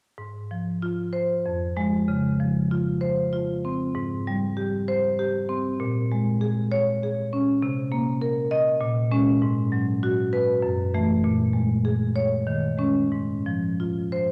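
A rubato 3/4 lilt at 97 BPM carries this flowing, warm fragment of a contemporary classical piece for solo marimba in Ab major, played with medium hard mallets from F2 to Eb5 and heard close and up front with a full, dry tone inside a wet recital hall reverb, its harmony drifting from Ab6 through Dbmaj7, Bbm7, Cm7, Abm7 and Gbm7 before an Eb7sus4 brings it home to Ab6 at 13.1 seconds.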